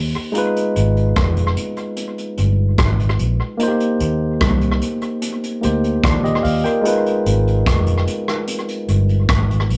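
A bright, barky tine electric piano and a dark, round, foam-muted fingered electric bass open this sweet, smooth lovers rock reggae fragment at 74 BPM, moving between Abm6 and Eb6, with a brushed vintage drum kit entering at 0.3 seconds on hi-hat, rim click and a punchy kick, treated with tape echo, all set up front in a small room with the rough feel of a rehearsal-room recording.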